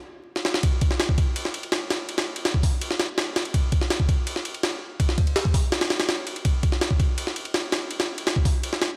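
A dry, gritty hardware recording crackling with vinyl noise and a light digital ambience opens this atmospheric, raw drum and bass excerpt, where a brief silence gives way to a drum fill at 0.4 seconds before the drop lands at 0.6 seconds, carried by an up-front, compressed, pitched-up jungle sampler-style drum kit of thumpy kick, high-tuned snare, hi-hat and ride cymbal, tape-warm and dressed in studio reverb until 8.9 seconds.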